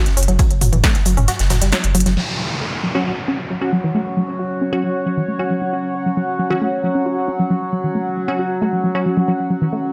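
A deep, round sine sub bass sits up front in this industrial, relentless stretch of peak-time techno, driven with overdrive and pumping against the sidechain before it falls away at 2.2 seconds. In the opening, a punchy, layered electronic kick, a techno kit with a punchy snare, smooth hats, crash and toms, and a roomy acoustic rock kit with a medium-tuned snare pile up, with a band accent at 1.7 seconds. Running nearly throughout is a mellow analog pluck riff of sawtooth and square waves with a noise layer, shaped by chorus, tube saturation and delay. From 2.2 seconds a filter sweep moves across the synth arpeggio as an electronic downlifter passes through. A crisp, wave-folded wavetable chord stab with dub echo, a resonant drone of moving overtones and a dark, moody, detuned pad with a sub octave join in, all three pumping and the drone and pad swimming in chorus and reverb. A moderate digital room reverb holds the sound together in this fragment cut from a longer piece.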